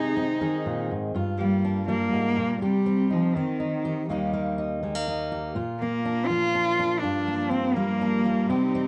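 Heard through worn, warbling cassette tape with a warbly pitch drift, this short passage from a longer piece sits in a small room with a modest natural reverb. It is peaceful, gentle acoustic folk for a duo or small band, moving at 122 BPM in 3/4 with a straight feel, tuned a touch below standard to A4 = 438 Hz. Up front, a single bowed cello carries the melody with a focused, slightly boxy tone, vibrato and a plate reverb, taking a solo from 1.1 seconds. Beside it, a fingerpicked jumbo steel-string acoustic guitar with fresh strings supplies full-bodied, warm accompaniment. The harmony drifts from Abadd9/C through Gm7, Cm, Eb and Bb before returning to Gm7. At 7.0 seconds a very quiet, earthy chamber string ensemble slips in close behind with sustained bowed chords and light vibrato.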